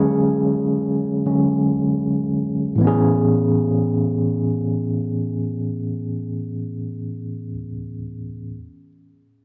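R&B in 6/8 with an intimate mood, this short fragment of a longer piece features a lone overdriven tine electric piano, barky and gritty through a combo amp with medium tremolo, sitting up front in a moderate plate reverb as it slows over an opening Dmaj7#11 before moving to Amaj7 at 2.8 seconds.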